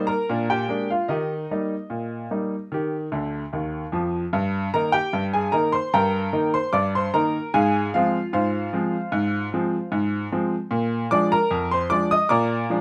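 A straight 2/4 pulse at 75 BPM drives this jaunty, cheerful ragtime passage in Eb major, cut from a longer piece, where a solo upright piano with a woody, polished, up-front tone ranges from D2 to Eb6, plays a fill from 3.1 to 4.3 seconds before a new section built on Eb/G, Fm/Ab and Bb7, and sits in a moderate studio reverb.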